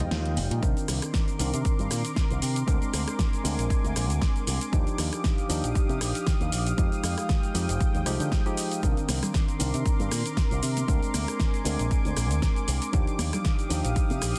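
Sleek and groovy, this nu-disco excerpt in C minor rides a swung 117 BPM pulse, opening with a brief break and band accent before a punchy, up-front electronic kick enters at 0.6 seconds beneath a fat-snared pop kit with metallic hats, rim click and shaker, a bright picked bass with an envelope filter and sidechain pumping, a worn, slightly out-of-tune tine electric piano with tape echo, a thick detuned sawtooth pad pumping under chorus, and congas sitting in the background with a brief hit at 0.4 seconds before returning from 9.1 seconds, all cycling through rich ninth chords in a dense modern master.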